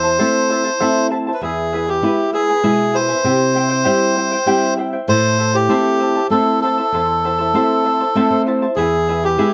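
A dry, closely miked sound frames this festive, earthy Andean folk excerpt in A minor at 98 BPM in 3/4, where a reedy, breathy melodica carries the melody up front over a shimmering, double-strung charango and a fingerpicked flamenco guitar, which adds a nylon-string fill from 7.8 to 8.8 seconds as the chords move through Am, E and C.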